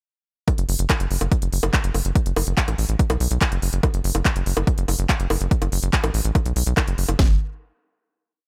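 The sound is dry and close, with little reverb, and every part sits up front in this short, complete psychedelic trance piece in F# minor, tuned slightly low to A4 = 438 Hz. It runs at a straight 143 BPM in 4/4, and its mood is driving and alien. The drums and bass arrive together at about 0.5 s and launch straight into a drop. A techno kit supplies a punchy four-on-the-floor kick and a cracking snare. A second electronic kit, re-recorded in a small room, layers crisp programmed open and closed hi-hats, a handclap backbeat and high bongos over them. Underneath, a tight sequencer bass built from sawtooth and square waves rolls in sixteenth notes between F#1 and B1, with a fast-attack filter pluck, a mellow decay and tube saturation, before the piece closes on a final note from 7.2 to 8.5 s.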